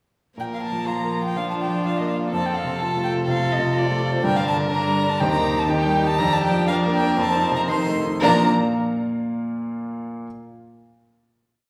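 In a straight 4/4 at 112-126 BPM, this cheerful, lively classical-period movement for piano quintet in Bb major sets a dark, woody violin melody with vibrato up front over a clear baby grand piano's rocking broken chords with audible action noise, while a second violin, viola and cello weave soft-attack sul tasto inner lines and sustained chords, the viola intimate and airy-bowed in the background, before the strings stop at 8.5 seconds and the piano's long sustain carries the final Bb chord to 10.3 seconds in a wet recital-hall reverb heard from further back in the room.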